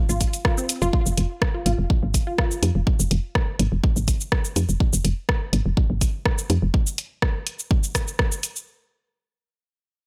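A straight 4/4 pulse at 124 BPM drives this cool, clinical minimal techno drop in F minor, cut from a longer piece and sitting on a single Fm chord. A punchy, layered electronic kick sits up front beside a tape-tinged house kit of cabasa, hi-hat and rim click, both re-recorded in a large room yet kept close and present. Beneath them, a woody FM bass moves between F1 and F2 with a soft, round, dark tone, a fast attack and a decaying tail, pumping through sidechain compression until it stops at 6.7 seconds. Higher up, a resonant blip pluck between C4 and F4 plays a short riff with a juicy, squelchy sawtooth character, detuned with a noise layer and a moving notch, and is treated with phaser, tape echo and sidechain pumping before it drops out at 2.4 seconds. The mix is dry and tight, leaving the drums to carry the groove alone, the kick stopping at 8.3 seconds while the house kit runs on to the end at 8.7 seconds.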